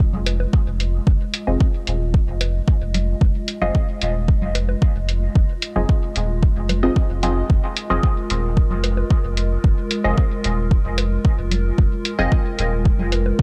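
A warbly, lo-fi pad holds a sustained Fm7 chord from the very start, its detuned square and triangle tones softened by chorus and built-in reverb and rising and falling with sidechain pumping. This short dub techno cut from a longer piece moves at 112 BPM in a straight 4/4 in F minor, with a deep, nocturnal mood. Underneath, an overdriven, layered electronic kick sits up front beside a round sine sub bass that hovers between Eb1 and F1, given tube saturation and its own sidechain pumping. Analog-sounding congas and bongos stay in the background, tape-softened and trailed by dub echo, while a muffled, compressed hi-hat enters at 0.3 s. At 1.5 s a muted, filtered chord stab joins with a fast pluck and short decay, its sawtooth-and-square tone colored by phaser, cassette tape grit and dub echo. The production is dark and dry overall, leaving the pad's reverb and the echoes on the percussion and stabs to supply the sense of space.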